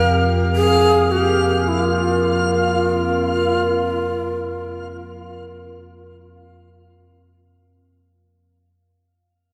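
Dark ambient drone in free time, ominous and cavernous, centered on Fsus2: an up-front, rumbling low drone sits beneath a detuned, chorused analog pad holding sustained chords and a reversed, granular swelling texture on a high F, while a breathy, bamboo-toned shakuhachi with unsteady vibrato, chiff and tape echo carries the melody until 7.3 s, the whole piece heard in a vast, echoing space with a 7.4-second reverb tail as this cut from a longer work fades out.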